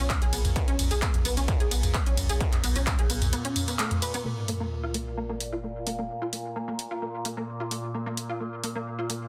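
Driving peak-time techno, relentless and dark, cut from a longer piece, where a squelchy, detuned blip pluck riff runs throughout over an overtone-sweeping drone with chorus and reverb, while a thick saturated sub bass and a distorted, overdriven kick pound through the opening drop until about 3 seconds, an up-front overdriven kit of handclaps, hi-hat, ride, tambourine and toms carries on, and an electronic sub drop lands as an impact at 4.3 seconds in a dense, heavily limited mix.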